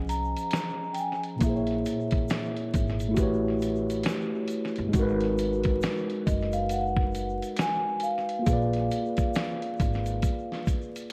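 Swung sixteenths in 4/4 carry this nostalgic, reflective lo-fi hip hop fragment, where a gritty, compressed sampler-style drum kit with thumpy kick, fat snare, hi-hat and finger snaps sits up front beside a clean tine electric piano coloured by cassette tape, low-pass filtering and tape echo, while a woody, dark pizzicato upright bass on gut strings drops out at 10.2 s, a metallic, ringing soft-mallet vibraphone with slow motor vibrato sings the melody through filtered echo, and a grainy tube shaker hovers in the background, the whole mix echo-heavy and dusted with spring reverb and vinyl crackle.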